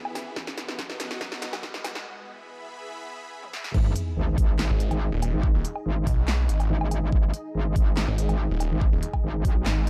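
A lush supersaw pad, pumping under a low-pass filter, opens this menacing, chaotic half-time wobble dubstep fragment, soon joined by a big-room kit of punchy snare, crisp hats, handclaps, toms, woodblock and crash, a knocking overdriven kick and a background riser and sub drop through a build-up, drum fill and brief break, until the drop at 3.7 s unleashes a metallic, chorused FM wobble bass and, from 4.7 s, a snarling detuned saw bass growling through distortion in a dark digital ambience.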